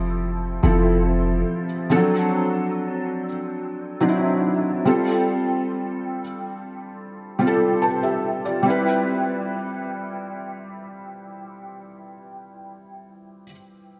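A straight 4/4 pulse moves at an unhurried 71 BPM in this smooth, dreamy R&B piece in C major, cut from a longer work. A felt-muted upright piano carries the accompaniment throughout, its soft, mellow tone sitting up front with an intimate closeness, the clatter of its action audible beneath the chords and an ensemble chorus thickening its sound. A clean 808-style bass opens the piece on a deep, boomy F1 of sine-like, dark character that strikes quickly and decays, falling away after 1.4 seconds and leaving the piano alone. The harmony drifts from Fmaj7 through D7/F# and G9sus4, and the piano adds a short fill from 7.4 to 8.7 seconds before the music settles onto Cmaj7. A lush hall reverb soaks the whole mix, lending it a hazy, floating atmosphere.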